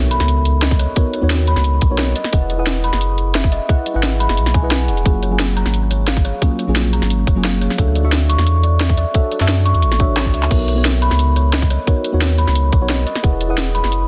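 Lush and dreamy, this liquid drum and bass excerpt pairs a round, chorus-and-phaser-tinted FM electric piano and a woody, ringing kalimba trickling arpeggios through digital delay over a deep, thick saturated sub bass, a tight up-front electronic kick and a layered kit with a cracking snare, handclaps, hi-hat and crash, opening on a barely audible impact and turning on a brief drum fill at 10.2 seconds as the lush major-ninth chords circle back.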